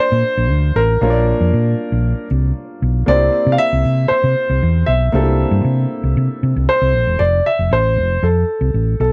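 A dry, close recording in a small room gives this short disco excerpt an intimate 1970s studio character. At 116 BPM in a straight 4/4 feel and F major, the mood is glamorous and danceable. An up-front concert grand piano carries the melody from the start to 9.1 seconds, its tone warm and deep in the low end. A second grand piano plays accompaniment beneath it, warm, intimate and boxy, with audible action noise, until it stops at 7.2 seconds. A hollow-body short-scale electric bass, fingered and amped, sits dark, round and forward in the mix, while the harmony moves through Bb and C7 before settling on F as a new section arrives at 7.2 seconds.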